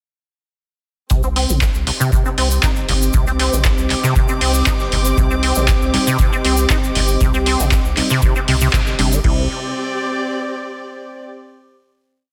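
A squelchy, resonant sawtooth acid line with accents and slides drives this driving, trippy acid house piece in C minor at 118 BPM, arriving at 1.1 s together with a saturated sub bass, a tape-warm four-on-the-floor kick, a very quiet looped funk breakbeat, a grainy hand-played shaker and bowed sul tasto chamber strings, joined by a booming drum machine's metallic hats, claps and crash, a moody detuned pumping pad, and from 5.9 s sparse, worn, slightly out-of-tune electric piano stabs echoing in the background, before a band accent at 8.7 s and a final C major chord held by the strings until 11.2 s.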